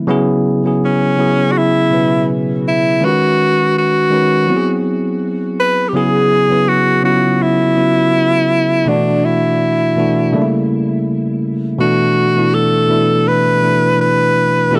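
Dry, close 1970s-style studio sound with light reverb frames this smooth, soulful R&B fragment from a longer piece at 82 BPM in 4/4 with a gentle 16th-note swing, where a bell-like tine electric piano sets out the chords from the start, moving from E69 through G#7alt and C#m7 to D6, and a breathy, up-front tenor saxophone enters at 0.8 seconds with a close-miked, jazz-style solo melody full of subtone and vibrato.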